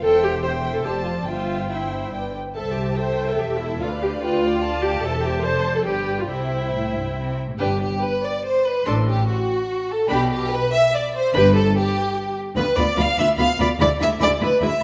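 Lively and spirited, this quick classical-period movement for string orchestra moves in a flexible, rubato triple metre and is cut from a longer piece. A violin section carries the expressive, vibrato-laden melody up high, while a second violin section, set up front, plays a smooth, even second line beneath it. A focused viola section fills in the accompaniment, and the low end pairs a rich double bass section with a warm cello section played with light vibrato. All five parts sound together from 0.0 s, and a second section begins at 7.6 s. A moderate scoring stage reverb gives the ensemble a sense of space.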